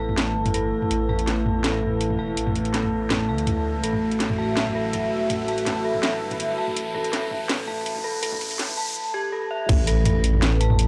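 A moody, detuned analog pad, eerie warbling FM bell arpeggios with 12-bit sampler grit and tape echo, a rumbling detuned saw bass and a metallic inharmonic drone open this dark, spacious half-time drum and bass fragment. Up-front drums with a cracking snare and metallic hats drive a build-up carrying a filter sweep and an electronic riser until the drone stops at 9.0 seconds. At 9.7 seconds the drop lands on an impact and a tight layered kick, all within a dry, gritty hardware sound with transformer saturation.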